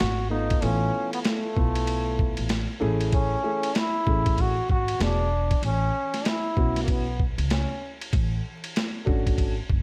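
A bright, punchy trombone carries the melody from the first second over woody pizzicato upright bass and a gritty, compressed boom bap drum kit with a thumpy kick and high-tuned snare, setting a smooth jazz-hop groove at 96 BPM with a swung sixteenth-note feel. A dark, mellow grand piano with audible action noise enters at 0.3 seconds and moves through jazz chords such as F#m9, E7 and a rootless A6/9, while the trombone's line ends at 8.0 seconds. Vinyl crackle and small room ambience surround the whole mix, framing the piano's vintage, intimate tone and giving this cut from a longer hip hop piece a warm, smooth character.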